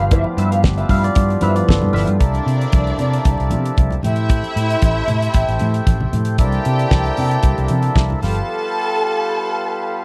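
This is a danceable, celebratory disco cut, recorded dry and close in a 1970s studio style with a straight feel. It opens with a barky tine electric piano solo through a combo amp with a phaser, accompanied by a clean, picked electric guitar with wah and ensemble chorus, both of which stop near 2.2 seconds. Underneath, a damped 70s drum kit sits up front with a fat snare and tight kick, while a dark, foam-muted fingered bass gives a round, amped low end and very quiet, low-tuned congas add a thin-skinned sparkle. A mellow, reedy accordion holds sustained chords throughout, and from 2.2 seconds a lush, distant string section takes up a second line with focused vibrato over rich extended chords such as G13, C13 and Am7. The drums, bass and congas drop out around 8.5 seconds for a break, leaving the accordion and strings to carry the fragment to its close.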